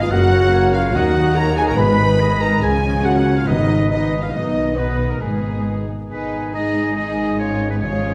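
Cinematic and swashbuckling, this fragment of a longer piece moves with a determined stride in straight common time. A lush violin section carries the smooth, vibrato-rich melody from the background, while a second, focused violin section, a bright vintage-toned clarinet, a clear solo oboe and a pure flute with a crisp attack weave second lines, the oboe falling away at 5.9 s. Mellow French horns hold the most prominent sustained chords, joined by dark, distant trombones, while a tight trumpet section adds stabs from behind. Beneath them, a very quiet viola section gives even accompaniment, expressive cellos and a rich double bass section anchor the low end, and a ringing, thumb-plucked harp spins arpeggios across a broad range. Round, soft-mallet timpani enter quietly at 0.9 s and return for the closing moments, all set in a wet scoring-stage reverb with a dark, warm production.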